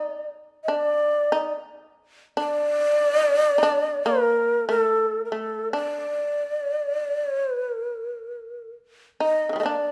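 Japanese traditional chamber music, calm and austere, moves in a free rubato around 71 BPM as an airy, close-miked shakuhachi carries the expressive melody with soft attacks and vibrato up front, while a bright, buzzing, plectrum-plucked shamisen plays a percussive second line beneath it throughout this short excerpt cut from a longer piece, all bathed in light reverb.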